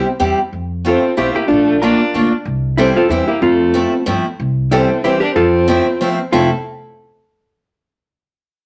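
Light reverb lends a soft sense of space to this charming, nostalgic musette waltz, a short cut from a longer piece that moves at 187 BPM in 3/4 with a gentle swing, in F major. Up front, a clean, dusky hollow-body electric guitar picks the melody, while a bright acoustic archtop guitar, also up front, supplies picked accompaniment with audible finger squeaks. Beneath them, a single dark violin bows a smooth, expressive second line with vibrato, portamento and a soft attack, and a woody, crisp pizzicato upright bass on steel strings joins at 0.2 seconds.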